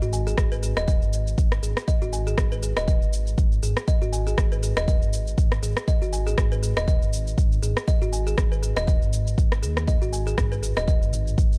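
A dark, rumbling detuned saw bass opens this driving afro house excerpt, its beating sawtooth tone pumping with sidechain compression, and a deep, tape-warmed electronic kick joins up front at 0.4 s. An electronic afro-pop kit adds rim clicks, shaker and toms with a swung sixteenth feel, while a woody, boxy kalimba plays short arpeggios through tape echo and its own sidechain pumping. The sound is dry and gritty, with a cassette hardware character.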